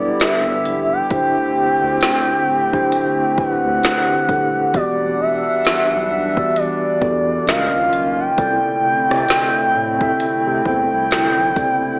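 A gliding, detuned sawtooth lead carries the melody up front with soft attack, vibrato and portamento, sweetened by chorus and digital delay, in this moody, late-night contemporary R&B excerpt at 66 BPM with a swung sixteenth feel. A mellow tine electric piano plays the accompaniment close by, while a hollow, flute-like pad warbles behind it with slow attack and long release. A deep, saturated sine sub bass sits in the background, and a soft, woody electronic drum kit of kick, snare, rim click and hi-hat enters at 0.2 s, all heard through light reverb and an AM-radio sound over chords moving from G6 through Em9 to C69.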